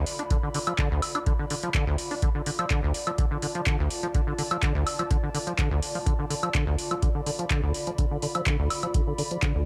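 A straight pulse from a deep analog kick and an up-front electro drum machine of handclaps, woodblock and metallic hats drives this playful, trippy acid house excerpt, as a squelchy, resonant sawtooth acid bass riff with a filter sweep, tube saturation, chorus and delay pumps beneath a warbling, detuned, lo-fi pad whose mellow, nostalgic haze also breathes with the sidechain over a light reverb and a single minor chord.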